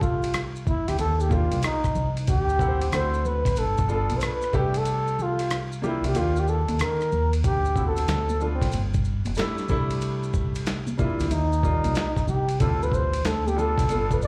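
A breathy, close-miked flugelhorn carries the melody with vibrato and scooped notes, taking a jazz solo from 7.4 seconds in this mellow, cool jazz-hop piece in D dorian at 93 BPM with a swung sixteenth feel. A woody upright piano with plate reverb and slapback echo plays the accompaniment over a round, dark fingered electric bass and a gritty, compressed sampler-style drum kit, whose thumpy kick drops out between 4.9 and 7.4 seconds. Soft-handed congas and maracas sit in the background, and the whole cut, taken from a longer piece, sounds like a live gig heard through a club PA, with venue reverb and vinyl crackle.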